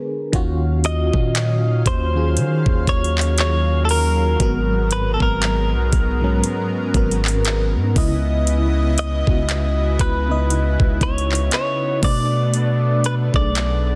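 Contemporary R&B with a late-night, sensual mood, where an FM electric piano with tremolo and phaser plays alone for the first 0.3 seconds before a lush, detuned pad with chorus, a deep sine-toned 808-style bass, and an electronic drum kit with a knocking kick, metallic hats and handclaps join, followed at 0.9 seconds by a clean, direct-recorded electric guitar melody with delay, all moving through minor ninth chords that close on a minor seventh in a dense, dry, heavily limited mix cut from a longer piece.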